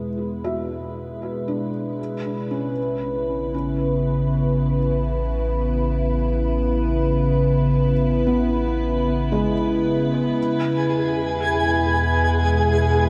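Peaceful and luminous, this ambient excerpt drifts at 57 BPM in a straight 4/4, cut from a longer piece and moving from E to Aadd9 and back to E at 10.4 seconds. An evolving wavetable pad sits up front with sustained chords, its detuned unison tone morphing slowly under chorus and its own reverb, while a felt-muted upright piano plays soft, intimate arpeggios through tape echo, its thick felt and audible action noise giving each short note a hushed, close character. Beneath them a round analog bass holds deep, nasal low notes, and all three parts fade in across the whole passage. At 10.8 seconds a twinkling granular texture enters up front, adding a sparkling octave-up shimmer with a slow attack and long release. The whole is bathed in a lush hall reverb with a dark production that keeps the highs softened.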